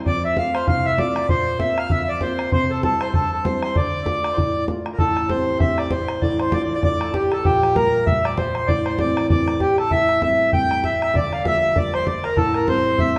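A grand piano with intimate, audible action noise and long sustain opens this spirited, dark and lively Celtic reel at 195 BPM with a swung feel, joined at 0.1 seconds by a reedy, boxy, up-front accordion carrying the melody, a quieter and fuller second accordion line, and a damped, tight bodhran, the band playing live together in a wet stone room as the tune moves into its second section at 5.0 seconds.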